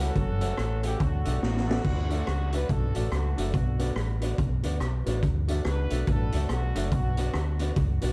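A boomy, gritty garage drum kit sits up front in this bouncy, joyful ska excerpt at 142 BPM in D major, entering at 0.2 seconds with crash, hi-hat, kick, rim click and snare, and a fill from 1.4 to 1.8 seconds, over a round, punchy fingered electric bass that plays from the very start. A mellow, tight horn section with light vibrato carries the melody over a swung 4/4 feel, while a dark, clean electric guitar and a woody, slightly detuned upright piano play accompaniment and stabs in the background, all three with dub echo. The production is dark with light reverb, moving through F#m, D and Bm.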